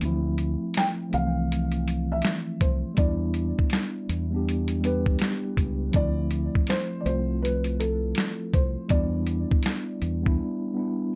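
A felt-muted upright piano carries the melody from 0.8 seconds, its soft, boxy notes cut short by thick felt, with audible action noise and filtered echoes drifting into plate reverb. It floats over a clean tine electric piano voicing the chords, a round, dark fingered electric bass, and a gritty, pitched-down, compressed sampler-style boom bap kit with a thumpy kick and medium-tuned snare, all swung and up front. This nostalgic, reflective lo-fi hip hop fragment, cut from a longer piece, carries a dusky, warm production, and the rhythm section drops out at 10.4 seconds, leaving the two keyboards to ring on briefly.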